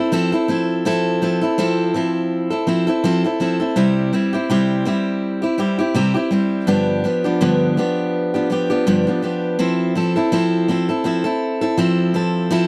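Pop in an easy-going, sunny mood at 82 BPM with a light 16th-note swing, this short excerpt features a bright, up-front picked steel-string acoustic guitar playing alone from 0.0 to 12.7 seconds, moving through Fmaj7, C and G7 before returning to Fmaj7 at 9.6 seconds, captured in a dry, close 1970s-style studio sound.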